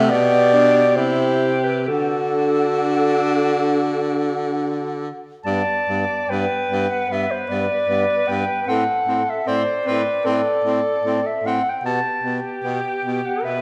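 Classical and tender, this rubato excerpt for single-reed quartet in G major drifts at 64-78 BPM, with a dark, smooth-topped clarinet carrying the melody up front over a distant alto saxophone's vibrato second line, a warm tenor saxophone accompaniment and a clear, vibrato-tinged baritone saxophone bass, all heard together from 0.0 to 13.6 seconds in a wet stone room whose reverb rings for 1.5 seconds as the harmony settles from D back to G/B near 11.8 seconds.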